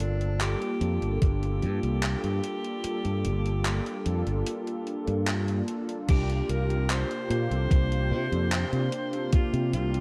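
Vaporwave at 74 BPM with a woozy, nostalgic mood, where a breathy, whispered alto saxophone with analog delay carries the melody over mellow, detuned synth brass and a faint, warbling lo-fi pad, all resting on Gm9 before moving to C9sus4 at 6.1 seconds. A bright, growly fingered electric bass sits up front beside a thumpy, tape-warm electronic kick that enters at 1.2 seconds and drops out between 2.8 and 6.1 seconds, while a gated, overdriven 80s drum machine adds crash, handclaps and hi-hat. A dark, clean electric guitar riff slips in very quietly at 6.5 seconds, under light reverb in this short cut from a longer piece.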